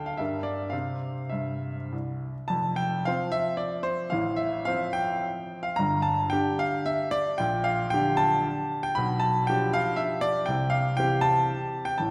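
Dotted rhythms lift this romantic triple-time dance in 3/4, which sways with rubato between 94 and 124 BPM and carries a proud, graceful air in F major before settling into C major from 9.0 s. A solo baby grand piano carries everything from F1 to B5, its clear, intimate tone up front with audible action noise and long sustain. A wet concert hall reverb places the listener further back in the room, and the fragment, cut from a longer piece, closes at 12.1 s.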